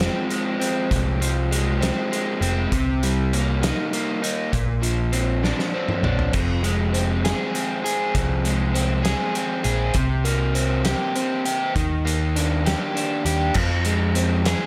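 A crunchy, overdriven electric guitar sits up front, its picked, double-tracked riff carrying this moody, bittersweet indie rock cut from a longer piece. Beneath it, a picked electric bass adds a dark, round, amped low end. A loose acoustic drum kit plays in a pumping studio room, with a fat snare, punchy kick, dark cymbals and a rolled-off top across hi-hat, toms, crash and splash. The drums break into a fill from 5.4 to 6.3 seconds, and the harmony moves through minor and seventh chords before a brief new section begins at 13.6 seconds. The straight 6/8 feel and the dry sound keep the whole band intimate and direct.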